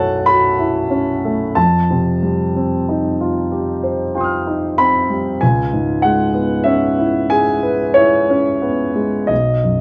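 Rubato triple-time phrasing drifts through this luminous, hazy impressionist classical excerpt for solo concert grand piano, whose warm, open tone, deep bass and long sustain sit up front in light reverb, colored by the worn, warbling pitch drift of old cassette tape as the harmony glides from B9sus4 through F9 and C#m7 to rest on B by 9.3 seconds.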